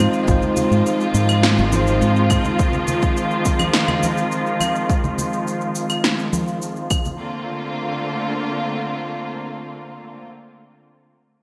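A straight 4/4 groove at 104 BPM, built on an overdriven, deep electronic kick and punchy gated snare with electronic cabasa and claves, sets up this smooth, relaxed sunset chillout excerpt in Bb mixolydian, with warm congas in the background. A round, up-front fingered electric bass and a bell-like tine electric piano through digital delay open the piece and drop out by 2.6 seconds. Meanwhile, veiled, con sordino strings with vibrato hold sustained chords until 10.3 seconds, shaped by a filter sweep through the first 7.2 seconds. A lush hall reverb and bright 1980s-style digital production frame the harmony, which moves from Ab6 to Bbmaj9 at 7.2 seconds.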